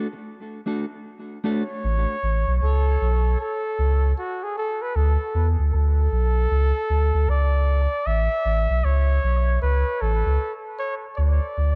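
A dark, clean electric guitar opens this spacious, hazy dub reggae excerpt alone, its fingered phrase steeped in dub echo. A mellow flugelhorn takes the solo melody at 1.5 seconds with light vibrato and a smooth top, its line also trailing dub echo, and a deep, round sine sub bass arrives up front at 1.8 seconds beneath the swung 77 BPM groove in A major. The chords move from D to A and D5 within an echo-heavy mix with light small-room reverb, until the harmony lapses at 11.2 seconds.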